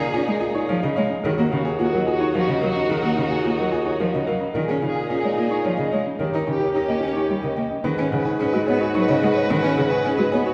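A straight 3/4 pulse at 109 BPM drives this urgent, hypnotic fragment of minimalist classical pattern music in Eb minor, where a clear concert grand piano carries the melody from the background over woody, dry marimba arpeggios, a soprano saxophone's vibrato-laced second line, sustained chords from a distant, even violin section, a focused bowed cello up front and a mellow bassoon bass, the ensemble heard from further back in a scoring-stage reverb as the harmony turns to G#m7 when a new section opens at 7.8 seconds.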